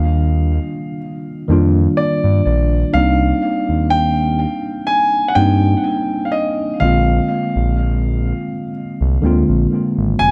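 Moody and longing, this slow contemporary R&B excerpt, cut from a longer piece, sets a concert grand piano melody with deep bass over a worn, slightly out-of-tune tine electric piano, both carrying tape echo, above a dark, sustained sawtooth synth bass with a moving notch, all up front in an echo-heavy mix with echo chamber and small room reverb as the chords pass from Ebmaj9 to Cm9 at 2.9 seconds and Bb7 at 6.8 seconds.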